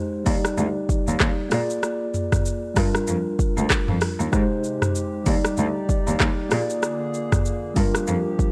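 A swung afrobeats groove at 96 BPM in 4/4 sets a breezy, sunny tone, driven by an up-front afro-pop drum kit of deep kick, metallic hi-hats, handclaps, rim click, shaker and toms, coloured by overdrive and vintage 12-bit sampler grit. A clean tine electric piano carries the Bb mixolydian chords through Ebmaj7, Bb7, Gm7 and Abmaj7, while a single close, bowed cello with a reedy gut-string tone holds down the bass. At 4.6 seconds a hollow, flute-like pad with chorus slips in softly beneath, all within a dry, gritty hardware sound in this brief cut from a longer piece.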